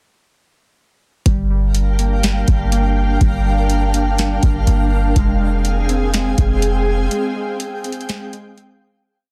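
This short, ethereal cloud-rap hip hop piece in F dorian opens at 1.3 s with a booming analog drum machine laying down a sparse half-time beat at 123 BPM (deep kick, crisp snare, metallic hats with fast hi-hat rolls), clean 808-style sub-bass notes following the kick, and warbling lo-fi synth keys repeating a nostalgic eighth-note arpeggio like a sampled loop through chorus, a low-pass filter and tape echo. From 1.7 s an airy, detuned pad holds sustained chords with ensemble chorus, reverb and sidechain pumping, while a faint twinkling granular texture adds octave-up shimmer over the chords moving from Gm7 to Fm. The bass drops out at 7.1 s as the spacious verse breaks down and fades, all within a dense, heavily limited, fairly dry mix.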